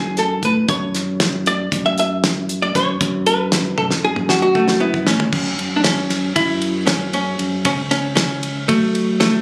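This cut from a longer piece sounds as if it was captured on a phone in a club, with light reverb and the room's ambience around the band. It is progressive instrumental music in 9/8 with a straight feel, driving and tense. An archtop guitar, miked and amplified, carries the melody up front in a dark, clean, compressed hollow-body tone, soloing through the opening 5.3 seconds before the music moves into a new section. Beneath it, a fingered electric bass sounds bright and punchy. A damped 70s drum kit plays dry and mid-forward, with a fat snare, a tight kick, hi-hat, ride, crash and toms, and it plays a fill from 3.8 to 5.3 seconds that leads into the second section.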